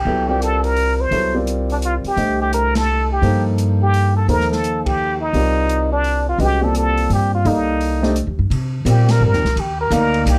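Spiritual and cool, this modal jazz passage in C dorian swings in 3/4 at 170 BPM, cut from a longer piece and opening on a Cm9 chord under light reverb and a dark production. A plunger-muted trumpet sits up front with a punchy, vintage wah-wah tone and scooped notes, over a warm concert grand with long sustain and audible action noise, a woody pizzicato upright bass, and an airy small-room drum kit of dark cymbals and boomy kick set lower in the mix. The band hits accents at 2.7 and 4.8 seconds, and from 8.5 seconds the muted trumpet takes a solo.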